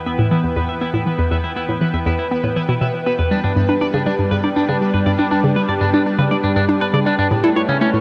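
Cosmic and mysterious, this short cut from a longer piece of ambient, sequencer-driven space music moves at 120 BPM in a straight 4/4, drifting from Em to G and then A under a huge, wet reverb with an 8.8-second tail. Up front, a hollow, bouncy square-wave pluck plays a detuned, wave-folded riff through chorus and tape echo, while a bright, twangy clean electric guitar picks arpeggios that fade in through their own tape echo. Behind them, a swirling, vintage analog pad fades in with phased, chorused sustained chords, and a pulsing, tempo-synced gated texture built from triangle waves shimmers in the background.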